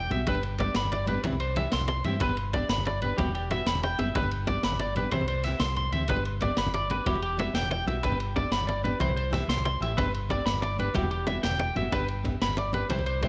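A twangy, slightly broken-up electric guitar plays up-front arpeggios with spring reverb and tape echo over a round, dark dub bass, soon joined by a bright fingerpicked dreadnought acoustic guitar, a gritty, saturated breakbeat kit with a tight kick and dark cymbals, and low-tuned congas ringing in the background, all cycling through G, C and Em chords in a danceable 12/8 highlife groove that features a drum fill at 5.3 seconds in this short cut from a longer piece.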